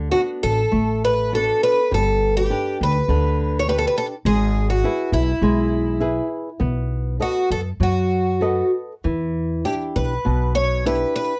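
A fado-style ballad with a tender, nostalgic mood, this short excerpt from a longer piece moves with a loose, rubato feel in 4/4. A picked twelve-string acoustic guitar carries the melody up front, its fresh strings giving a bright, shimmering, octave-doubled tone with a parlour character, a touch of finger squeak and a slapback echo. Beneath it, a fingerpicked flamenco guitar supplies warm, boxy accompaniment, while a pizzicato upright bass with gut strings adds a woody, thumpy low end that sits close in the mix. The harmony passes from D6 through G, E/G# and B7 before settling on Em7 near 9.0 seconds. The dry, close sound of a 1970s-style studio is softened only by light reverb.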